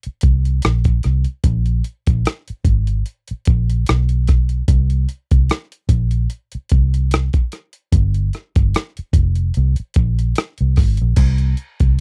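A dusty, sampler-style drum kit of crash cymbal, hi-hat, rim click and a thumpy kick opens this sultry neo-soul R&B excerpt at 74 BPM with a lightly swung 16th feel, joined at 0.1 seconds by a dark, round, foam-muted fingered electric bass sitting between F1 and C2, both parts up front in a dry, close 1970s-style studio sound, the drums gritty, compressed and tape-warm.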